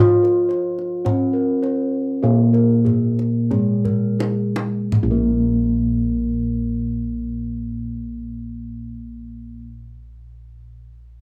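A home cassette recording in a moderate studio room carries this serene, shimmering stretch of Javanese gamelan, cut from a longer piece, in a slow 4/4 of 41 to 57 BPM that slows through the first 4.9 seconds. Up front, a bronze metallophone played with padded disc mallets rings out a mellow melody, while bright, round bossed gongs weave beating arpeggios colored by cassette tape and plate reverb. Softer bossed gongs struck with padded beaters hold the bass with a touch of tube saturation, and a deep, hard-handed kendang sounds from 0.2 to 5.6 seconds, including a drum fill from 3.5 to 4.9 seconds.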